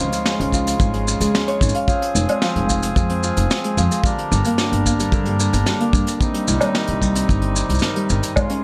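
Bright, ringing fingerpicked Celtic harp arpeggios with tape echo run through this delicate, autumnal folktronica fragment at 111 BPM in 4/4, moving through Db, Fm, Gm and Cm. A woody pizzicato upright bass and a reedy, airy accordion holding sustained chords sit beneath the harp. A mid-forward vintage brush kit with a rolled-off top plays hi-hat, shaker, snare and woodblock, joined at 0.5 seconds by a dry, tight kick, all in a light reverb.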